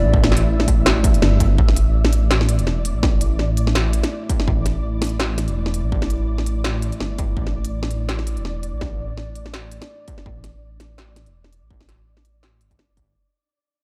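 Dark, warm digital ambience frames this tense, spacious half-time drum and bass excerpt at 166 BPM, where a distorted electronic kick and an industrial kit with a clanging snare and crisp hats sit up front over a rumbling, beating detuned saw bass, a moody wave-folded analog pad with subtle chorus and sidechain pumping, and a flickering granular texture in the background, opening on a drop with a band accent at 1.2 seconds before a filter sweep on the bass runs through the fade-out from 1.6 seconds.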